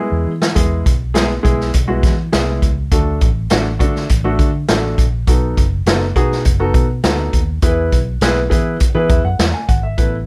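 This uptempo, 1960s-style soul clip is cut from a longer piece and has an uplifting, danceable feel in a straight 4/4. An upright piano carries the accompaniment from the start, woody and intimate, with short sustain and audible action noise, and it sits up front. A vintage fingered electric bass joins at 0.1 seconds, foam-muted and amped, with a dark, round tone. A swinging big-band drum kit of hi-hat, kick and snare arrives at 0.4 seconds on a brief opening fill. Its studio room gives it a distant, roomy character, yet the punchy kick and medium-tuned snare still stand out. The chords move from E to D, then B7, and back to E, under light reverb, with tuning a hair below standard pitch.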